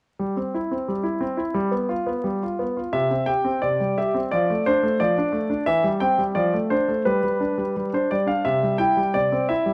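A clear concert grand piano, intimate and up front with audible action noise, deep bass and long sustain, plays an elegant, cheerful classical-period sonatina alone in C major at 88 BPM in 2/4 with a rubato feel, moving from C/G through G7 and Dm/F to settle on C at 8.5 seconds, heard close in a recital hall's moderate reverb with a touch of vinyl crackle in this short cut from a longer piece.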